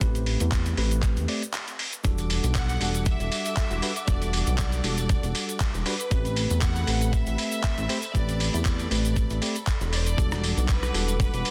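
A glossy, chorused synth bass pumps up front against a thumpy, gritty electronic kick in this sensual, groovy nu-disco excerpt, with a bell-like tine electric piano under a low-pass filter, a dusty soul sampler-style kit of handclaps, hi-hat, rim click and tambourine, and a dry cabasa in the background, before a brief break at 1.5 seconds gives way to veiled, muted strings at 2.0 seconds and a biting, intense violin section carrying the dub-echoed melody from 2.6 seconds over Am9 and Em11 chords in a dense, heavily limited mix.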